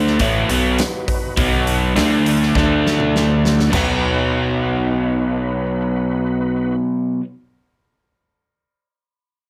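Gritty and raunchy, this short cut from a longer piece sits in blues rock power trio and southern rock territory, moving at 102 BPM in a straight 4/4 in B mixolydian. A crunchy, overdriven electric guitar, picked and double-tracked, carries the riff up front with a warm edge. Behind it, an overdriven tonewheel organ holds thick sustained chords in the background, colored by a slow rotary speaker and chorus vibrato. An upright bass plucked pizzicato on steel strings gives a woody, dark low end. A big acoustic rock kit in a large room, with bright cymbals, a medium-tuned snare and a boomy kick, plays a drum fill from 2.5 to 3.7 seconds before dropping out at 3.9 seconds. The chords shift from B to D5 and back to B at 3.7 seconds, where the second section begins, all under a light reverb.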